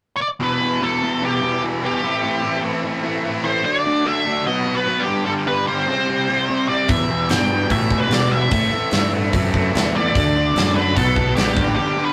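A dark, octave-fuzzed lead guitar with wah and distortion carries the melody from the start of this smoky, gritty blues rock and southern rock excerpt in E minor at 148 BPM. It rides over a double-tracked, overdriven rhythm guitar riff and a thick, key-clicking tonewheel organ whose slow rotary speaker and chorus vibrato sit in the background. At 6.9 seconds a growly, punchy fingered fuzz bass and a big, mid-forward acoustic rock kit with a medium-tuned snare and rolled-off top join in, both stopping by 11.8 seconds for a brief break, all captured in a rough rehearsal-room recording with tube saturation and small-room ambience.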